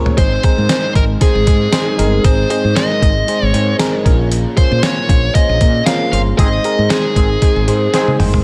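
A dark, smooth overdriven lead guitar carries the melody up front through digital delay in this uplifting, glossy 1980s-style pop passage at 116 BPM with a light 16th-note swing, backed by a muffled, thumpy, pitched-down sampler drum kit with gated reverb and a drum fill at the start, a round, woody fretless bass, a glassy, bell-like FM electric piano with chorus and phaser, a very quiet, biting double-tracked rhythm guitar, and a tight, vibrato-tinged horn section whose octave-doubled stabs join a band accent at 6.4 seconds, all moving from Ab to Bbm7 and back within a light digital ambience.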